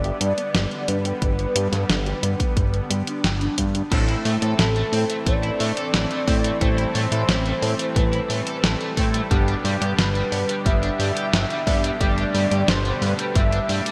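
A straight 4/4 groove from a clean 12-bit drum machine, with its fat, up-front snare, hi-hat and crash bathed in gated reverb, is joined at 1.2 seconds by a punchy, layered electronic kick. A thick, nasal, saturated analog bass sits up front beneath a soft, detuned supersaw holding chords in the background, while a dark, clean, fingered electric guitar arpeggiates until 3.9 seconds. From there a bright, overdriven guitar riff and glossy, pulse-width-modulated polysynth stabs with a cassette-tape tint enter, all under a velvety, vibrato-laced synth lead melody drenched in chorus, delay and shimmer reverb, giving this nocturnal, nostalgic synthwave piece a lush hall and polished 1980s-style digital sheen.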